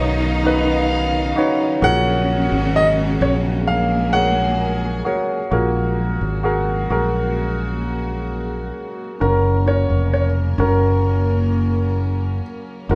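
A hopeful, tender pop ballad excerpt in which a clear, intimate concert grand carries the melody with audible action noise, over a warm grand piano accompaniment, a bright, up-front fretless electric bass and a dark, floating string section holding soft-edged sul tasto chords, while a rich, lush cello section with vibrato sings a second line until 5.5 seconds, all in a moderate room reverb as if played live together.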